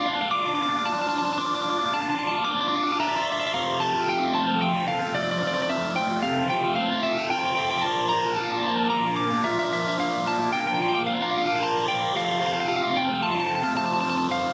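A bright, overdriven, double-tracked stack guitar riffs up front while a slightly broken-up lead guitar sings a compressed melody through digital delay, the two opening together on a brief build-up over D minor. This hopeful, cinematic rock cut moves at 112 BPM in a straight 4/4 in F major. At 3.5 seconds it opens onto Fadd9, then moves through Bbmaj7 to a resolving F chord. The riff guitar carries a swirling phaser, and a moderate recital-hall reverb lends the whole passage a spacious glow.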